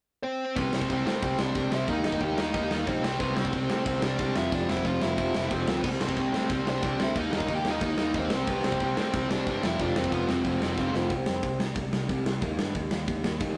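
Punk rock at 182 BPM in a straight 4/4, energetic and rowdy, with a rough rehearsal-room sound, tube saturation and light reverb. A dark, smooth, overdriven lead guitar carries the melody from 0.2 s. A crunchy, bright guitar riff up front and a warm overdriven guitar in the background join it, along with a round, punchy fuzz bass and a big acoustic drum kit with a punchy kick and a bright stone-room ring. A drum fill at 10.8 s leads into a new section at 11.1 s, where the lead has dropped out and the chords move from C5 to Eb.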